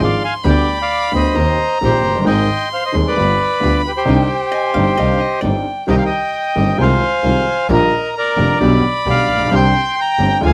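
A sultry, melancholic tango in C minor opens at once with a reedy, mid-forward bandoneon carrying the melody up front, alongside a dark violin whose expressive second line glides with portamento and vibrato. Beneath them, a clear, woody upright piano lays down the accompaniment, and a biting, earthy bowed double bass anchors the low end, while a lush symphonic string section adds very quiet, smooth stabs. The pulse sits around 132 BPM in 4/4 but is played rubato, so the phrasing breathes freely over a harmony that moves from G/D through Ab and G7 before settling on Cm at 5.9 seconds, where the opening section begins again. Briefly, from 4.5 to 5.8 seconds, a clean, compressed hollow-body electric guitar adds a picked second line in the background. The sound is a dry, close 1970s-style studio recording with light reverb, and the passage is cut from a longer piece, closing on a Csus2 chord at 9.5 seconds.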